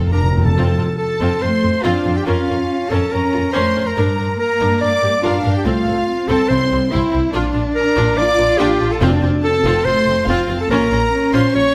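Adventurous and heroic, this cinematic film-score passage, cut from a longer piece, drives forward at 142 BPM in a straight 4/4 in F major. It opens with a timpani fill played with medium mallets on calf heads, and the drum returns between 6.5 and 9.6 seconds. A lush violin section carries the melody with smooth vibrato from the background, while a second, more intense and distant violin section adds its own line. A close, focused viola section fills the accompaniment, and the bass rests on a smooth double bass section joined by a dark, woody chamber cello section. Up front, a close-miked solo clarinet in classical style weaves a second line from 0.1 seconds. The harmony moves through F, Bbm/F, Gm and C before shading into Bbmadd9, all captured with close, detailed microphones and light reverb.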